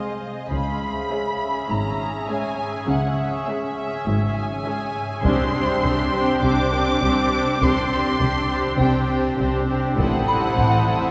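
Cinematic suspense film score, mysterious and tense, in which veiled con sordino violins carry the melody over a background second violin line, rich muted violas and a bubbling, resonant sawtooth texture with chorus and its own reverb holding sustained chords, while dark cellos and lush double basses enter at 0.5 s with very quiet heavy-stick taiko, and a delicate, tinkling music box returns at 5.3 s beside a distant, faint studio violin section, the whole set in a cavernous church reverb.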